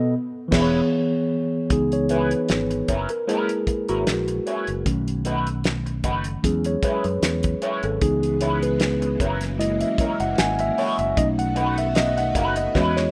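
Lush 1970s-style soul in E major at a relaxed 76 BPM with a gentle sixteenth-note swing, smooth and unhurried, opening on a full-band accent before a mellow, up-front tine electric piano takes the solo from 1.7 seconds over chords that cycle through C#m7, F#7, B7 and E6. Beneath it, a slightly broken-up electric guitar through a small old amp plays a wah riff, a fingered electric bass sits low and direct, and a cloth-damped, thuddy drum kit with a fat snare, tight kick, hi-hat and dark crash cymbal closes on a fill at 12.7 seconds. A shimmering string-machine violin section with ensemble chorus enters at 8.0 seconds in the background, all within light reverb and studio ambience in a rough home-demo mix cut from a longer piece.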